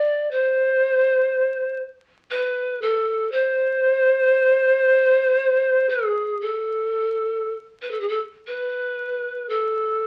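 Rubato in a slow 3/4 at 59 BPM, this Caucasian folk lament unfolds as a mournful, longing solo for a breathy bamboo pan flute, heard up front over the full 10.1 seconds, cut from a longer piece. The flute's soft, chiffy attacks, vibrato and unsteady tone sit within a narrow range from G#4 to D5, its highs rolled off into a mellow hush. A small, wet room reverb and the crackle of a very old 78 rpm record surround the playing.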